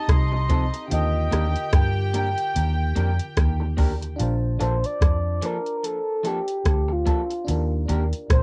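A reedy, woody FM lead carries the melody with chorus and tape echo, turning to a soft solo at 4.2 seconds in this romantic, smooth lovers rock reggae fragment, over an overdriven vintage rhythm box with a deep kick and metallic hats, a dark, round, foam-muted fingered bass up front, slightly broken-up guitar stabs through a small old amp, a glassy, bell-like FM electric piano with phaser and delay in the background, and a gut-toned bowed string section with light vibrato that drops out at 4.1 seconds, all captured as a dry home cassette recording.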